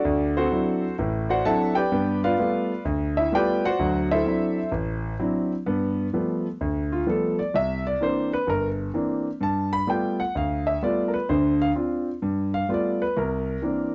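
A dry, close studio sound with a 1970s character and a touch of light reverb puts a single concert grand piano up front, intimate and natural, its deep bass and audible action noise clearly present. This playful, relaxed solo jazz passage swings at 128 BPM in 4/4, the piano ranging from G1 to B5 across two statements of the same theme, the second beginning at 5.6 seconds. The harmony moves among ninth chords on D, G and C, with a brief Dm7 before the final turn back to C9 at 13.1 seconds, shortly before this cut from a longer performance ends.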